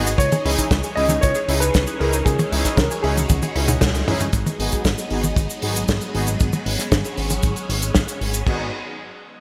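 Swirling, phased string-machine chords, a nasal, detuned analog pluck playing arpeggios, fat synth-brass stabs and a glossy chorused synth bass open this melodramatic, danceable italo disco excerpt, joined at once by a tight, dry kick and a damped, up-front 70s kit with dark cymbals, snare, hi-hat, toms and cabasa. A natural-toned baby grand piano carries the melody through delay until 3.8 s, where a band accent lands in the middle of a drum fill, and the pluck drops out at 4.3 s as the harmony moves from C#madd9 to G#m7. The bright 1980s-style digital production sits in a lush hall reverb.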